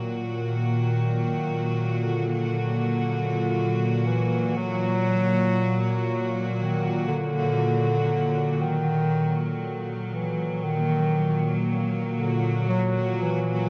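Soaked in a huge ambient reverb and worn, warbling old tape with drifting pitch, this dark, unsettling ambient drone piece moves at 59 BPM around an Eb minor chord. A tense, string-like synth drone on Bb2, sawtooth-edged with ring modulation, a noise layer and its own reverb, sits up front under a filter sweep through the first 8.6 seconds, while a bright, earthy chamber cello section holds bowed chords with light vibrato. From 0.5 seconds a mellow solo bass clarinet carries a classical-style melody up front, its line trailed by tape echo.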